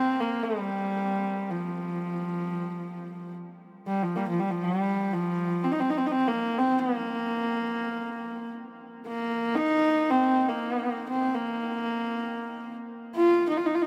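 A solo horsehead fiddle opens this excerpt of Mongolian folk music, bowed by one player in free time in Bb zhi mode, tuned to A4 = 438 Hz. Its rich, earthy, husky horsehair tone sits up front, moving between F3 and F4 with light vibrato and portamento for the full 13.9 seconds. A huge ambient reverb with an 8.4 second decay surrounds the line, lending a vast, proud mood.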